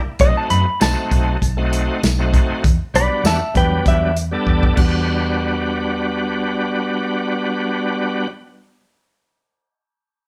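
A straight-eighth feel at 98 BPM in 4/4, with a light swing on the sixteenths, carries this smoky, mournful soul blues in E minor, cut from a longer piece. A dry, acoustic soul drum kit sits up front with a tight kick, medium-tuned snare, hi-hat, tambourine and dark crash cymbal, its rolled-off top and pumping room sound giving way after a drum fill from 4.5 to 5.1 seconds. Beneath it, a vintage muted fingered electric bass plays low and round, with a foam-muted, amped tone that carries on until 9.0 seconds. The clean lap steel takes the lead with a warm, compressed slide solo over B7b9 and then Em7, while a bright, shouting tonewheel organ holds the chords through a lightly overdriven slow rotary speaker with chorus vibrato and audible key click. The band sounds warm, playing live together in one room with a light touch of reverb.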